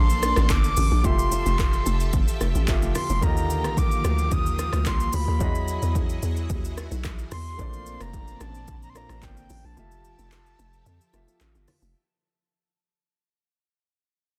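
Warm and relaxed, this 12-second amapiano excerpt at 110 BPM pairs a hollow, bouncy log drum bass and a punchy deep house kit of kick, handclaps, rim click, shaker and smooth hats with a breathy, flute-like synth lead carrying chorus, tremolo and tape echo over deep-toned grand piano, shimmering vintage string-machine violins and very quiet bongos and congas, moving through Bbmaj9, Fmaj9, Ebmaj9 and Emaj9 in a dense, heavily limited mix with little reverb before a break at 9.8 seconds.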